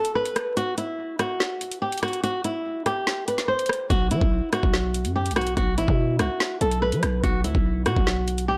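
Ominous and tense, this drill excerpt moves at 144 BPM in a half-time feel, with a fingerpicked flamenco guitar carrying a melody through a low-pass filter, its acoustic tone marked by finger squeak, over an electronic drum kit of knocking kick, woody snare, rim click and metallic hi-hats. At 3.9 seconds a growling, buzzy 808-style bass with a fast attack and decaying sine body enters under a B5 chord, with guitar, drums and bass all sitting up front. The sound is blown-out and overdriven, dusted with vinyl crackle, digital ambience and light reverb, and the piece is tuned slightly flat to A4 = 437 Hz.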